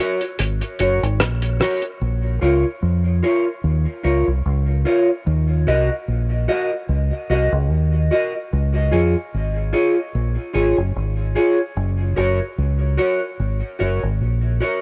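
A mellow, clean electric guitar opens this heavy, hypnotic dub reggae excerpt at 74 BPM in Bb minor, its fingered accompaniment coated in analog chorus, dub echo and cassette tape grit. A cloth-damped, thuddy drum kit adds dry, rolled-off hi-hat and rim clicks only until 2.0 s, while a deep, round fingered electric bass enters at 0.4 s and sits loudest and up front. The harmony moves through Gb, Bbm, Ebm and Db before returning to Gb, all under light reverb with the hazy feel of a home cassette recording.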